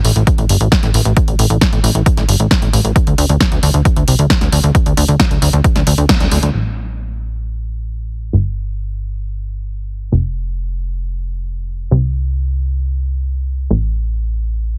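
Bittersweet and driving, this short cut from a longer uplifting trance piece runs at 134 BPM in a straight 4/4 in A minor. A plucky analog bass carries the low end throughout, sitting between F1 and D2 with a funky, filter-plucked sawtooth and pulse-wave bite, fast attack, ring-modulated edge and sidechain pumping, and it sits up front in the mix. A punchy analog drum machine plays hi-hat and snare from the start, both softened by low-pass filtering and kept dry, and an overdriven electronic kick joins at 0.3 seconds. The band hits an accent at 6.1 seconds, and the drums drop out by 6.5 seconds, leaving the bass alone for the second section until 14.8 seconds. The whole recording has a digital ambience and a heavily compressed, radio-like sound.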